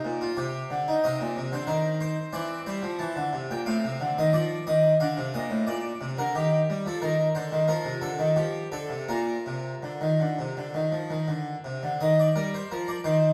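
In a rubato 4/4 at 80-92 BPM, this flowing, dance-like baroque-style suite movement in Bb major unfolds on a solo harpsichord tuned to A4 = 441 Hz, its plucked, full French-style tone with two sets of strings ranging from A2 to A5. The harmony opens on C minor and settles into Bb and Eb, with the harpsichord sitting up front while a wet stone-room reverb of 1.3 s places the listener further back in the space. This short passage, cut from a longer piece, restates its opening material at 12.0 s before ending at 13.3 s.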